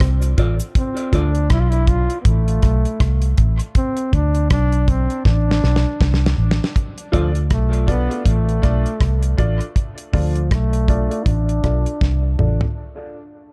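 Set in a small room with a dark production, this hypnotic, meditative dub reggae excerpt moves at 80 BPM in 4/4 with a swung sixteenth-note feel in D dorian. A damped 70s drum kit sits up front, dry with a fat snare and tight kick across hi-hat, rim click and toms. Beside it is a round, punchy, foam-muted fingered electric bass. A clear trombone carries the melody with vibrato and a smooth top, shaded by a low-pass filter and dub echo. Near the start a brief, close cabasa shake sits in the background, and a mellow, clean electric guitar with tremolo appears, the guitar returning only briefly later. From 7.1 s a brilliant, worn upright piano, woody and slightly detuned, adds echoing stabs as a filter sweep runs through the second half, with drum fills closing each section over harmony that moves from Dm to D5 and back to Dm.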